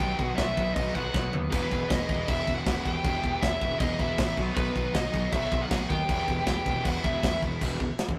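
Heavy metal, relentless and heavy, in a short cut from a longer piece. A warm, overdriven lead guitar through a small cranked amp carries the melody with tape echo, shadowed by a dark, very quiet high-gain second line, while three bright picked rhythm guitars (one double-tracked, one compressed) churn out riffs in the background over a growly fuzz bass. An up-front, polished drum kit with a punchy kick drives it all, adding a brief fill at 1.1 seconds, and the chords move between B and Em before landing on E5 at 7.6 seconds, all in a rough rehearsal-room sound with tube saturation and light reverb.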